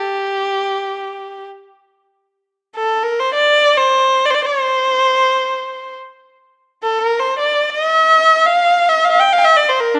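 Unfolding in free time with an unmeasured pulse, this short cut from a longer Persian modal ensemble piece sits in dastgah shur on D, tuned to A4 = 442 Hz. A single bowed kamancheh plays solo across the full 10 seconds, moving between D4 and G5. Its tone is clear, focused and boxy, shaded with vibrato and portamento, and it sits up front in the mix. A moderate recital hall reverb, with a decay of 1.6 seconds, gives the lone instrument a sense of space. The mood is melancholic and hypnotic.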